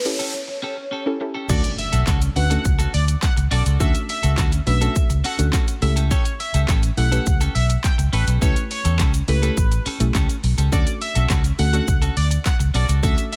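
Over a punchy, up-front pop drum kit with fat snare, handclaps and a faint egg shaker, this euphoric, carefree dance-pop excerpt opens with a brief ringing vibraphone phrase, a background riser, a clean picked electric guitar riff and soft round plucks that pump gently, before dropping at 1.5 s into a bold, detuned octave-doubled sawtooth lead and a foam-muted vintage bass in a digital ambience.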